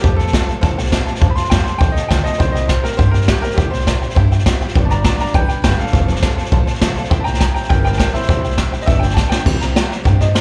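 An upbeat, retro rockabilly fragment opens with a brilliant, polished upright piano carrying the melody through slapback and tape echo over a detuned, jangly honky-tonk piano, a very quiet picked steel-string acoustic guitar, a thumpy gut-string upright bass and an up-front brush kit with dark cymbals and a boomy kick, all heard as a live club gig through the venue's PA, with a drum fill at 9.2 seconds before the lead piano stops at 9.4 seconds.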